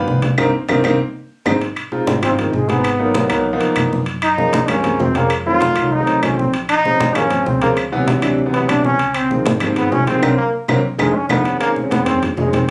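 Lively, danceable Afro-Cuban jazz excerpt in which a warm, deep-toned concert grand and upright bass open together as low-tuned congas, ringing timbales and woody claves join, and a brilliant, punchy trombone with light vibrato and scooped notes takes a forceful solo over shifting jazz chords, band accents and drum fills, all captured with light reverb and a phone-in-the-room studio ambience.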